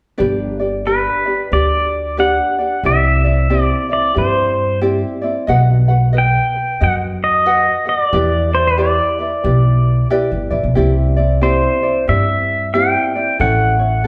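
A relaxed swung four-beat lilt carries this sunny Hawaiian fragment, where a light, bright, fingerpicked acoustic ukulele and a thumpy, woody pizzicato upright bass enter together at 0.2 seconds before a clean, compressed electric pedal steel guitar joins up front at 0.9 seconds with a warm slide melody played with fingerpicks and volume swells, the trio playing live in one room and bathed in a wet, large studio reverb.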